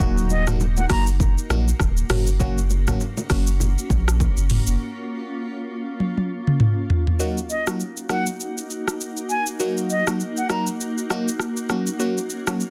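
This mellow, hypnotic afrobeats excerpt in Eb minor moves at 100 BPM in 4/4 with a swung sixteenth feel, alternating between Eb minor and Gb chords. An electronic, produced afro-pop drum kit sits up front throughout, with a deep kick, metallic hats, rim clicks, shaker and toms, and a touch of soft clipping on the snare. A deep, full sub bass with an added octave anchors the low end, while bright congas and bongos played with soft hands sit in the background; both drop away by 4.8 seconds. A biting, percussive FM electric piano with a phaser comps up front, and a cloudy, evolving granular pad carries sustained chords in its own built-in reverb. An airy silver concert flute with vibrato and tape echo offers a brief phrase near the start. After a drum fill at 6.0 seconds, the electric piano returns at 7.2 seconds and the flute at 7.5 seconds, all in a dry, dense, heavily limited modern mix.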